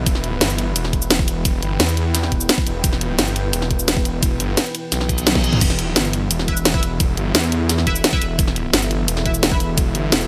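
Dark technical drum and bass with a futuristic edge, built on a thick, detuned sawtooth bass and a deep, moody pad holding sustained chords, both pumping against the sidechain under light reverb. An overdriven, knocking electronic kick and an up-front kit with a cracking snare, hi-hat, ride, shaker, toms and crash drive the groove, with a reverse cymbal at 5.1 s and a drum fill at 5.3 s. From 6.5 s a nasal, band-passed chord stab enters, bright with phaser, analog chorus and delay.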